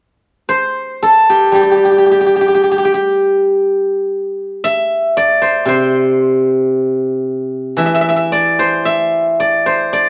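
Rubato, loosely pulsed around 57 BPM in 2/4, this short fragment of Chinese traditional music for solo plucked strings unfolds in the C gong mode with an elegant, serene calm. A steel-string zither, played with fingerpicks, sounds alone from 0.5 to 10.1 seconds across a span from C3 to E5, its silvery, ringing tone placed up front. A moderate studio reverb gives the zither a gentle sense of space.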